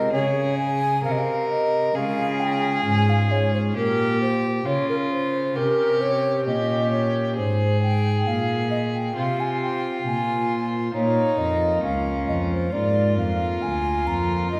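Heard from further back in a recital hall, the recording carries a generous, wet reverberation that lends this grave, solemn baroque-style sonata movement a sense of space. A wooden, airy baroque flute with a soft attack and gentle vibrato leads the melody throughout, its hollow tone caught up close even within the reverberant room. Beneath it, a single bowed violin with a rich gut-string sound and light vibrato plays a second line in period style, while a pipe organ voiced on a nasal cornet solo stop fills in the accompaniment. A lone cello anchors the bass with a dark, reedy timbre and a smooth top. All four parts sound together from the opening to 14.6 s, moving in an unhurried, freely bending 4/4 pulse. The passage is cut from a longer piece, closing on a shift of harmony from 10.9 s onward.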